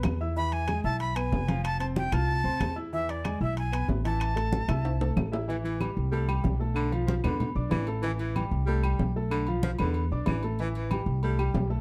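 Fiery and driving, this short salsa cut in A minor races along at 188 BPM, with a clear vintage grand piano accompanying, a thumpy, gut-strung upright bass up front, damped, low-tuned congas, ringing timbales and agogo bells and woody claves, while a breathy, bright jazz flute with crisp chiff carries the melody until a drum fill at 4.8 seconds hands off to a whispered baritone saxophone line entering at 5.5 seconds, all in a dark production with light reverb.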